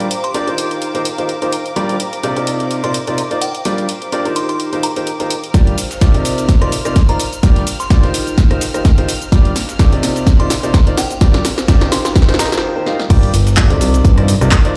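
A bright, woody upright piano riff opens this energetic, bittersweet piano house excerpt, pumping against a punchy, overdriven analog drum machine of handclaps, hi-hats, shaker and rim clicks, while a clear violin section with 12-bit sampler grit, a blurred granular pad and a glassy, warbling FM bell with chorus, tremolo and delay sit in the background. At 5.5 seconds a layered electronic kick and a gritty, tape-toned breakbeat kit with ride and snare join for a build-up with drum fills and a filter sweep on the piano, moving through Cm11, Gm7 and Eb69 chords. After a short break, the drop at 13.1 seconds brings in a fat, nasal, detuned analog bass that pumps under the kick in a large, reverberant room.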